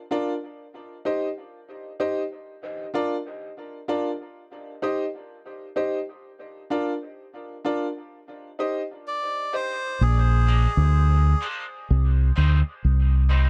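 A dry, close recording with a 1970s studio feel carries this hypnotic, heavy reggae in C minor at a slow 64 BPM, swung on the sixteenths and rocking between Bb and C minor. Brilliant, vintage grand piano stabs with long sustain, high-pass filtering and dub echo open the break alone, with a filter sweep arriving at 6.2 seconds. A reedy, nasal melodica melody with its own dub echo slips in at 9.1 seconds, then a round, punchy fingered bass lands up front at 10.0 seconds, followed closely by a dark, slightly broken-up picked electric guitar sitting low in the mix under high-pass filtering and dub echo.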